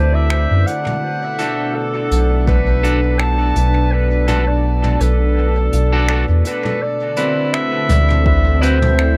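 Peaceful and spacious, this ambient dub excerpt moves at 83 BPM in D mixolydian with a gentle swing, its echo-heavy mix set in light small-room ambience as the chords shift from D9 to Bm7 and settle on D13 at 6.8 seconds. A distant, roomy clarinet carries the classical-style solo melody up front through dub echo, over a round, deep sub bass with tube saturation, an airy, breathy, detuned pad with chorus, and a drifting glass-harmonics texture in the background that ends at 6.8 seconds. A dark vintage brush kit with finger snaps, hi-hat and toms adds dub echo, bright picked clean electric guitar stabs echo too, and a punchy electronic kick sits in the background, sounding only briefly near 2.5 and 8.3 seconds.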